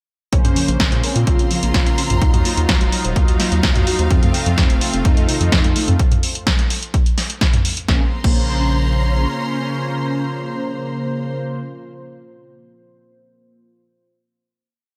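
A punchy electronic kick drives this hypnotic, melancholic melodic techno piece at 127 BPM in Bb harmonic minor, sitting up front in a four-on-the-floor pattern beside a punchy analog drum machine whose closed and open hats, snare, low tom and crash carry gated reverb. Beneath them a round, deep analog bass runs a sequenced sixteenth-note line with sidechain pumping, while a soft, full-bodied pluck repeats a 16-step arpeggio in the background through lush chorus, cassette tape colour and digital delay. A thick, detuned unison lead with vibrato plays a repeating riff, joined by a brassy, evolving analog pad that holds close-voiced chords with syncopated pushes, both treated with chorus, pumping and delay. A smooth, bowed string section enters at 0.9 seconds with slowly shifting chords, and a very quiet, moody ambient pad settles in underneath from 1.5 seconds. The chords move from Bbmadd9 to Ebmadd9 and F before a brief break, and the drums and pluck stop at 8.4 seconds as the piece resolves onto a final Bbmadd9 chord. 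The mix has light reverb and a bright 1980s-style digital sheen.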